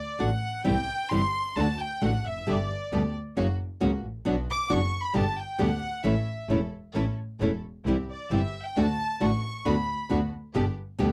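Dramatic and passionate, this short tango moves at 134 BPM in 4/4 with a rubato feel, set in D major and cut from a longer piece. A chamber violin section, bowed and up front, carries the solo line from the start until 10.1 seconds, its tone rich, biting and earthy with light vibrato and a smooth top. A classical nylon-string guitar is fingerpicked close by as accompaniment, and a single double bass, bowed with vibrato, holds the low end with a warm, even sound. From 0.7 seconds, a lush, clear studio string section plays bowed stabs with vibrato in the background. The harmony moves through D, C, D, G, F#, Bm, G and A, then C, D and Bm/D before settling on G, all captured in a dry, close 1970s-style studio sound with little reverb.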